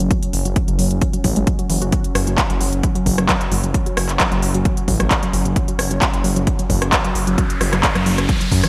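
A warbling, lo-fi pluck riff, a thick detuned saw bass, a deep, moody ambient pad and a techno drum kit of handclaps, hi-hat and rim click all sound from the opening moment of this driving, industrial peak-time techno excerpt at 132 BPM in a straight 4/4, with a heavy, overdriven electronic kick joining at 0.1 seconds. The bass, moving between F#1 and F#2, is menacing and saturated, its beating sawtooth tone pumping with the sidechain, while the nasal, dusty pluck sits back in the mix with chorus, digital delay and the same pumping. Beneath them the pad holds a slow-attack, mellow drone with chorus and its own reverb, also breathing with the sidechain. The drum kit is up front and overdriven, its smooth hats pumping and gated reverb shaping its sound. An electronic riser enters at 6.5 seconds and runs to the cut at 8.7 seconds, all set in a bright 1980s-style digital production with light reverb.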